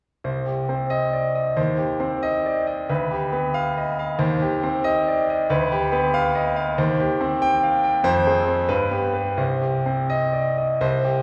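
Bathed in the wet reverb of a recital hall, a clear, natural grand piano sits up front in this stormy, passionate passage from a virtuoso classical piano study in C minor. It moves in a rubato 6/8 at around 83-95 BPM and is tuned to A4 = 444 Hz. The solo part spans C2 to G5 from 0.2 to 11.2 seconds, circling between C minor and G7 before passing through F minor and G to land back on C minor.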